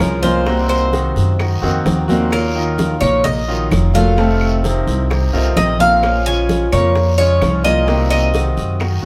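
Latin Cuban son and guajira in Bb minor at 130 BPM, this nostalgic, danceable excerpt features a bright, metallic Cuban tres carrying the melody up front on its doubled strings, beside a thumpy, dark pizzicato upright bass on gut strings. A boxy picked swing-style acoustic guitar and a clear, open baby grand piano playing long-sustained arpeggios fill out the harmony over Cm7b5, Ebmadd9, F7 and Bbm7. Thick-skinned congas and woody claves sit in the background, a raspy guiro adds its texture, tight, high-tuned bongos join at 0.5 s, and the band plays live in one room under a wet studio reverb.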